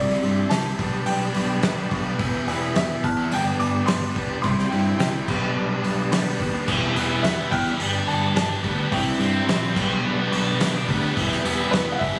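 Bittersweet and cool, this indie rock passage moves at 107 BPM in a straight 4/4, cut from a longer piece and cycling through Cadd9, Gadd9/B, Em and Gadd9. A woody upright piano carries the melody with a tape echo, while a fat tonewheel organ holds sustained chords in the background through a slow rotary speaker, light overdrive and chorus vibrato, its key click audible. An up-front overdriven electric guitar plays a bright picked riff, anchored by a growling, overdriven picked bass and an acoustic drum kit played with bundle sticks, with a punchy kick, fat snare and dark cymbals. At 6.7 seconds a high-gain distorted guitar joins with a second riff, colored by subtle chorus and tape echo. The sound is close and dry, captured on a phone in the room with studio ambience and compression.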